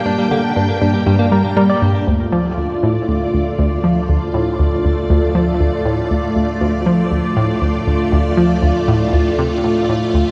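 This mysterious, hypnotic space-music piece opens with lush, vintage string-machine chords colored by phaser and ensemble chorus, joined for roughly the first two seconds by a very quiet, bright pulsing gated texture and a dark, clean electric guitar playing arpeggios through tape echo. Up front beneath the strings, a round, detuned analog pluck riff with chorus and tape echo runs in the low register, as the harmony moves from G minor to D minor at 2.1 seconds. A wet concert-hall reverb and a warm production surround this sequencer-driven ambient music, which is cut from a longer piece.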